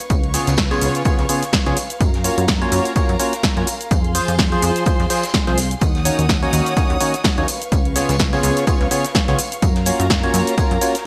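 A hollow, percussive organ stab with chorus, digital delay and sidechain pumping leads this energetic yet bittersweet piano house excerpt at 126 BPM with a light swing, riding over a punchy electronic kick, an analog drum machine's gated-reverb snare, hi-hat and shaker, a very quiet small-room cocktail kit adding smooth hi-hat, high-tuned snare and tambourine, a funky, plucky sawtooth bass with ring modulation and its own sidechain pump, and a dark, woody violin section holding pumping chords in the background through Db7, Gbmaj7, Fm and Ebm7, within a bright 1980s-style digital production.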